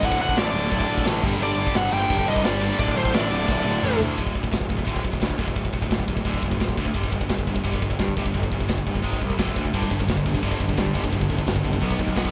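A dark, high-gain lead guitar melody opens this relentless heavy metal fragment at 173 BPM in 4/4, riding over two scooped, bright rhythm guitars that play a riff in D major, one of them set further back in the mix. Underneath, a picked electric bass adds a growly, fuzz-soaked low end, while an up-front acoustic drum kit with a tight kick, medium-tuned snare and glittering cymbals drives the straight feel. A drum fill around 3.5 seconds closes the opening passage, after which the lead melody and the background guitar drop away, leaving a single rhythm guitar, bass and drums to push through the second passage. The background guitar returns at 9.7 seconds to thicken the riff to the end. The harmony moves through D5 and G5 power chords, with a brief G#5 adding a jolt of tension, and the whole band sounds as though it is playing live together in one airy room with light reverb.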